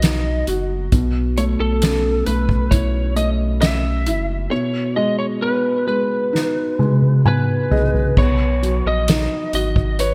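A tender, heartfelt pop ballad fragment at a slow 66 BPM in B major opens with everything at once: a slightly broken-up lead guitar singing the melody through lush chorus and digital delay, a mellow felt-muted upright piano with audible action noise, a thick saturated sub bass, and a soft-mallet drum kit with a boomy kick and gated reverb. The harmony moves from B through A/B and G#m/B, and a drum fill from 6.3 seconds, joined by a felt piano fill, leads into a new section on Bmaj7 at 8.2 seconds. The sound is bright and 1980s-flavoured, set in a small room with light reverb.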